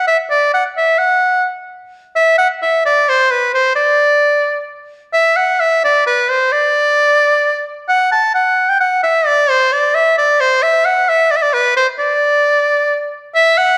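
A bright shawm carries this festive, rustic medieval tune on its own from start to finish, set up front with a light vibrato and a folk-style delivery. The line moves in a straight triple metre and stays within a compact register from B4 to A5. An opening phrase runs to 5.1 seconds, and a second passage follows until the piece is cut off at 13.8 seconds. The shawm sits in a wet recital-hall reverb with a 1.5-second decay, giving its bright tone a resonant halo. The overall production is dark and warm, which softens the edges around the bright instrument. This short passage is taken from a longer piece.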